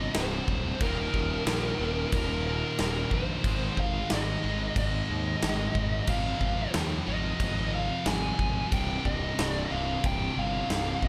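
Menacing and aggressive, this hard rock excerpt moves at 91 BPM in a straight 4/4, centered on C minor. A biting lead guitar carries the melody through overdrive and a slapback echo, sitting above a pair of riffing rhythm guitars: a bright, scooped high-gain part with heavy distortion and a sludgy overdriven one tucked into the background. Underneath, a fingered electric bass adds punchy fuzz and grit, while a big rock drum kit enters at 0.1 seconds with a punchy kick, a medium-tuned snare and bright crash cymbals, placed up front in a natural, roomy sound. The harmony moves from C minor through Eb5, Ab5 and Fm/Ab before landing on C5 at 8.7 seconds. The whole clip sits in a small room ambience and runs as a single section to 11.1 seconds, cut from a longer piece.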